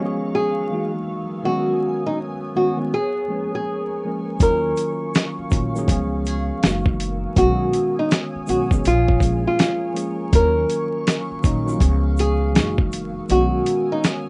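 Lo-fi hip hop in Eb minor at 81 BPM with a swung 16th-note feel, this reflective, melancholic cut from a longer piece opens with a fingerpicked nylon-string guitar carrying the melody up front, its small, filtered tone set over a worn, slightly out-of-tune tine electric piano with a cassette-tape character. Beneath them a granular cloud pad holds sustained chords, blurred and evolving with a slow attack, long release and its own reverb. At 4.4 seconds the rhythm section arrives: a gritty, compressed sampler-style drum kit with a thumpy kick, fat snare and hi-hat, overdriven and up front, alongside a woody, dark pizzicato upright bass and a grainy tube shaker tucked in the background. The harmony cycles through Db7, Gb13, B69, Bbm7 and Ebm9. The kick drops out at 13.3 seconds, and the rough home-demo mix, light reverb and vinyl crackle give the whole piece a dusty, intimate feel.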